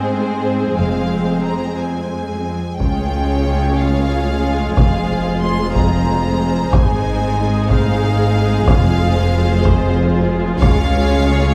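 Dark and dramatic, this epic orchestral film-score excerpt moves slowly at 61 BPM in a straight 6/8 in F minor, with a bright, intense violin section carrying the melody high over a lush second violin line, distant smooth violas, background French horns holding sustained chords, and rich cellos joined at 0.8 seconds by double basses underneath. At 2.8 seconds heavy-stick taiko drums with a vintage, band-limited sound enter to drive the piece, while soft-mallet timpani with a round calf-head tone add a very quiet touch around 8.7 seconds. The chords circle through Ab, F minor and Db in a moderate concert hall reverb with a dark production.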